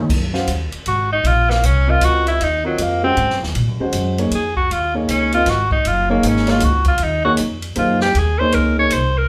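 A live band fills a small room here, its wet reverb lending a close, lively halo to this brief cut from a longer modal jazz piece. Set in Eb dorian at 157 BPM in a swinging 3/4, the music hovers on a single Ebm11 chord, and the mood is cool and spiritual. A warm upright piano comps intimately, boxy and with long sustain, its action noise audible, while a pizzicato upright bass sits up front with a thumpy, gut-string tone. A big-band drum kit swings underneath at a lower level, with ride, hi-hat, crash, a medium-tuned snare and a punchy kick sounding natural in the room. At 0.9 s a bright tenor saxophone enters and takes the solo, forceful and up front with vintage vibrato, carrying through to the end at 9.3 s.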